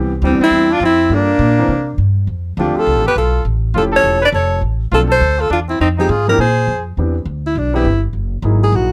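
A brisk swing at 205 BPM in 4/4, with eighth notes swung at 60%, drives this short, playful clip of small-group jazz in C major, cut from a longer piece. Pizzicato upright bass sits up front with a woody, acoustic tone, while a concert grand piano accompanies in an intimate voice, its action noise audible and its low notes deep with long sustain. The alto saxophone carries the melody close-miked and up front, a warm jazz sound touched with light vibrato and scooped notes. Beneath it a mellow trumpet plays a second line from a more distant, roomy position, also with light vibrato and scooped notes, before it stops at 6.8 seconds. From 7.0 seconds the alto takes a solo over fresh harmony, as the chords move from Cmaj7 through F69 and Dm7 earlier to Cmaj9 and F#13, all set in a light reverb.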